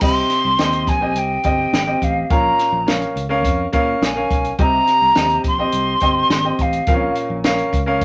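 A moderate studio reverb gives this short clip from a longer piece a close, present sound, with flute and piano set up front. It is uptempo 1960s-style soul in a straight four, passionate and urgent, moving between C minor and B-flat minor chords. An airy, hollow concert flute carries the melody high in its range, close-miked with a crisp attack and vibrato, and falls silent at 7.2 seconds. A clear, woody upright piano fills out the accompaniment across a broad span beneath it, while a round, dark fingered electric bass with a direct, amped tone holds the low end. A compact cocktail drum kit, smooth with a rolled-off top and a small-room feel, adds crash cymbal and hi-hat, a high-tuned snare and a punchy kick.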